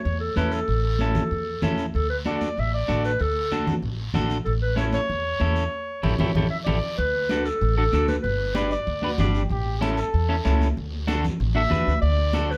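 A straight, danceable cumbia groove at 190 BPM in D major rides on raspy, vintage guiro, high-tuned congas heard from a large room, and a woody, thumpy pizzicato upright bass placed up front. A warm, classical-style clarinet carries the joyful melody over a picked electric guitar at the edge of break-up, with a full-band accent landing at 5.7 seconds. As the second section moves through D, G and A7, a bright trombone with vibrato adds a brief second line from 9.0 seconds, all in a moderately reverberant studio space in this fragment of a longer piece.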